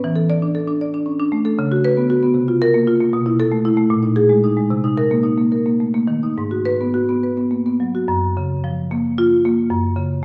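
A solo marimba opens on an E7sus4 chord, its rosewood bars struck with medium hard mallets for a woody, percussive tone that sits up front with a slightly boxy edge. This contemporary classical piece moves in a flowing 6/8 with a free, rubato feel, and the mood is warm. The harmony passes through a chain of suspended seventh chords (Db7sus4, C7sus4, Cb7sus4, Bb7sus4) before settling onto Cm7 at 4.7 seconds and then Abm7. At 8.1 seconds a new section arrives on a Gbmaj7 chord, and the marimba's span reaches from Gb2 up to D5. A wet recital hall reverb surrounds the instrument, and the recording is a short cut from a longer piece that ends at 10.2 seconds.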